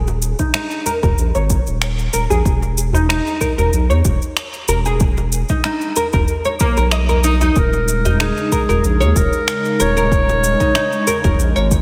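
A woody, plectrum-plucked oud stands up front in this meditative, earthy slice of organic downtempo, its arpeggios passing through a low-pass filter sweep and trailing tape and slapback echoes. Beneath it, a round, dark analog bass with a fast attack holds the low end alongside a deep, tape-warm electronic kick, while an overdriven electronic shaker and finger snaps add grit and a tight, cracking djembe sits in the background, all over a gently swung sixteenth-note feel. The harmony drifts between suspended and open major-seventh colours. At 7.6 seconds a mellow, classical-style clarinet enters as a solo voice with its own tape and slapback echoes, and an airy, breathy pad with chorus and sidechain pumping arrives just after to fill out the chords. A lush hall reverb gives the whole fragment, cut from a longer piece, a big arena sound.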